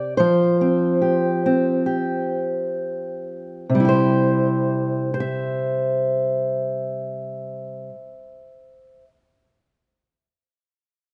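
Set in a moderate stage reverb with a softened top end, this brief, hopeful and gentle folk fragment features a dark, up-front fingerpicked steel-string acoustic guitar playing alone, with audible finger squeak, easing back in pace over its first 3.7 seconds on an Fsus2 before settling onto C.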